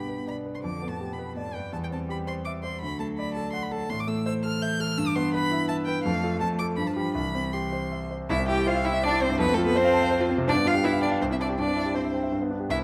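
From the first beat, a piano trio sets off together in a quick, graceful classical-period movement in triple metre, cheerful in mood and cut from a longer piece. A single bowed violin carries the melody up front, its tone focused and sung with vibrato as its line reaches into a high register. Beneath it, one bowed cello plays a smooth, even second line with its own vibrato, sitting a little distant in the blend. The concert grand piano provides the accompaniment close up, natural in colour with a deep bass, and it is the most prominent of the three. The harmony moves through a chain of cadences, and at 8.3 s the music turns to a new section that settles on C before closing on G at 12.3 s. Close, detailed microphones catch each instrument clearly, while a moderate stage reverb adds a sense of space around the ensemble.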